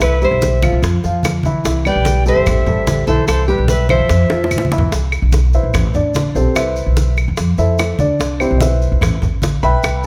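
Latin Cuban son and guajira with a sunny, danceable feel, this excerpt opens with a fingerpicked nylon-string guitar carrying the melody alongside a breathy, bright flute second line, while a dark, up-front grand piano plays arpeggios and a pizzicato upright bass with a woody tone anchors the bottom. Hard-handed, high-tuned bongos, low-tuned congas in the background, dry claves and grainy, distant maracas fill out the percussion under light reverb. A drum fill at 4.3 seconds leads into a piano solo from 4.9 seconds, after the guitar and flute stop at 4.7 seconds.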